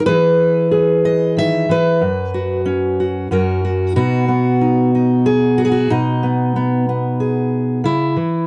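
This is a gentle folk piece for solo fingerstyle acoustic guitar, a short cut from a longer work, moving at 93 BPM in an unhurried 3/4 with a straight feel in B major. A single fingerpicked steel-string guitar carries everything, spanning F#2 up to E5 and sitting up front in the mix. Its fresh strings give it a bright, lively tone, and audible finger squeaks add an intimate, hands-on detail. The phrase opens on E, passes through F#sus4 to F#, then settles onto B at 4.0 s before moving to G#m/B and ending on C#m near 7.8 s. A light reverb lends some air, while the overall production stays dark and mellow, with a soft top end that keeps the mood tender.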